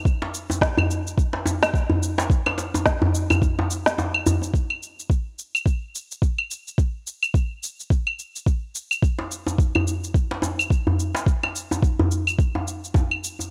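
Downtempo groove in an earthy, mystical mood, cut from a longer piece, where a soft, tape-warm electronic kick and an electronic kit of cabasa, woody snare and claves sit up front with a lilting sixteenth-note swing, joined by a medium-tuned, band-limited acoustic djembe struck with hard hands that drops out at 4.5 seconds and returns at 9.2, all in a dry, gritty recording with light reverb and a brief break in the kick just before the second section.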